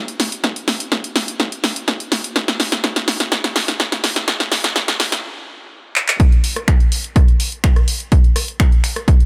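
A punchy, tape-warm analog drum machine opens this dark, cinematic techno excerpt with finger snaps, handclaps, rim clicks, a punchy snare and sidechain-pumped hi-hats in a short room, soon joined by a layered, high-passed electronic kick up front, as a fill-driven build-up halts for a stop at 5.2 seconds before the drop lands at 6.2 seconds under light reverb.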